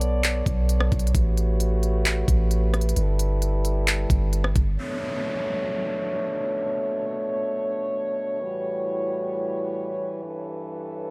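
Dry, close and up front, this atmospheric cloud-rap excerpt is ethereal and melancholic, set in a half-time hip hop feel. A mellow, vintage French horn section holds sustained, classical-style chords with light vibrato and sidechain pumping throughout, while a deep, sine-like 808 bass and an electronic trap kit, with knocking kick, crisp hi-hats, handclaps and rim clicks, play until about 4.7 seconds. After that, the horns carry on alone except for an electronic downlifter heard from 4.8 to 8.4 seconds.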